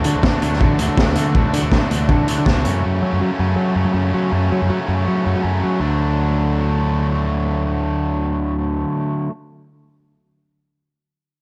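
A dark, warm mix in a small room gives this short cut from a longer indie rock piece a jangly, carefree mood at a brisk 162 BPM in straight 4/4, centred on D major. A raw garage drum kit sits up front with a boomy kick, a high-tuned snare, hi-hat and a gritty, saturated tone with a rolled-off top, and it plays only until 2.7 seconds. A bright, twangy electric guitar rings clean in the background through ensemble chorus and analog delay, dropping out at almost the same moment. An overdriven, warm electric guitar carries the main riff up front through to 9.3 seconds, alongside a punchy, direct picked electric bass that also stays forward in the mix. The harmony moves from Dadd9 to F#m, then settles on D when a new section begins at 5.8 seconds.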